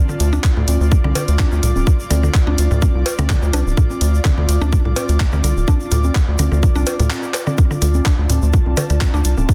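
Quirky and clinical, this short cut from a longer minimal techno track runs at 126 BPM in 4/4 with a light 16th-note swing, sitting on a D minor chord throughout. A tight, up-front electronic kick and a rubbery, hollow square bass carry the low end, the bass bouncing between D1 and D2 under sidechain pumping. Above them, a woody, mallet-like synth pluck plays a short-decaying riff treated with chorus and tape echo, while an airy, breathy pad with a slow attack and long release drifts higher, also shaped by sidechain pumping. A garage drum kit adds handclaps and crisp hats with soft clipping on the snare, and in the background an overdriven conga and cowbell layer with digital delay sits beside a grainy tube shaker. A brief break at 7.1 seconds interrupts the groove before it resumes, all within a dense, heavily limited master and light reverb.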